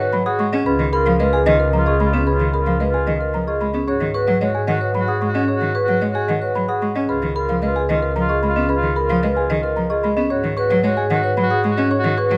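In a straight 3/4 at 112 BPM, this meditative, hypnotic minimalist pattern music in G# dorian sets a mid-forward marimba melody over a mellow oboe second line, bell-like celesta and metallic, ringing vibraphone arpeggios with fast motor vibrato, a cello accompaniment with soft attack and portamento, and a distant bowed double bass, all cycling between G#m7 and C#9 on a close, detailed scoring stage with moderate reverb.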